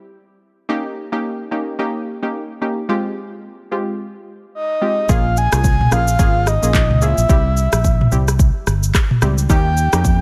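Sultry and hypnotic, this short afrobeats passage opens on a crystalline wavetable pluck with chorus at 0.7 seconds, a breathy, flute-like synth lead with chorus, delay and vibrato joining at 4.5 seconds over chords moving from Eb7 to Fmadd9. At 5.1 seconds a round, dark fingered electric bass and an up-front afro-pop drum kit with a deep kick, handclaps, rim click, shaker and toms come in together as the harmony shifts through Bbm7 and C back to Eb7. The swung sixteenth-note feel and dry, close sound keep the groove intimate, with the soft-attack lead sustained above the glassy, decaying plucks.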